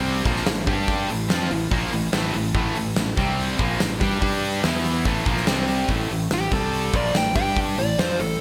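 A bright, 1980s-style digital production with a lush hall reverb frames this short, driving hard rock excerpt in A minor at 144 BPM, where a huge arena drum kit with a fat snare and punchy kick sits up front under gated reverb. Three picked guitars, a cranked overdriven stack and two tight distorted parts, one double-tracked, grind out power-chord riffs in the background over a growling, overdriven fingered bass, and one of the distorted guitars drops out at 5.9 seconds. At 6.3 seconds a dark, smooth, overdriven lead guitar steps up front for an aggressive solo.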